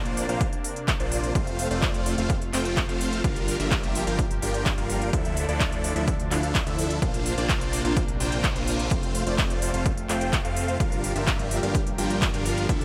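A huge, bright supersaw riff leads this anthemic, uplifting festival progressive house excerpt at 127 BPM, its detuned sawtooth chords sitting up front with phaser, delay, vintage 12-bit sampler grit and sidechain pumping. Beneath it, a fat analog bass with a wave-folded, detuned tone and a filter sweep holds down the low end, pumping along with the supersaws. In the background, a lush, warbling unison pad sustains slow-attack chords with chorus. A crisp big-room kit of handclaps and hi-hat enters at 0.1 seconds and a punchy, overdriven electronic kick at 0.4 seconds, both layered and re-recorded in a large room. The harmony cycles through Bbadd9, F, Gm7 and Dmadd9 under light reverb, and a very quiet reverse cymbal sweeps in at 8.2 seconds.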